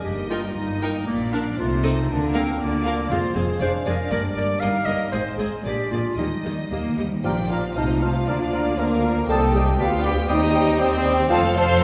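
In a straight 2/4 at 118 BPM, this quick, cheerful classical-period orchestral passage, cut from a longer piece, opens in Eb major with a smooth, vibrato-rich chamber violin melody over lush studio violins and a distant, roomy clarinet on second lines, clear horns holding sustained chords, violas in the background, and cellos and double basses carrying the bass. A close, dry timpani fill on calf heads at 6.2 seconds leads into a spirited section in Bb major at 7.3 seconds, where a pure, crisp-attacked flute and a vintage-toned cor anglais add second lines and a softly vibrating bassoon joins the accompaniment. The whole orchestra sits in the wet reverb of a church or concert hall.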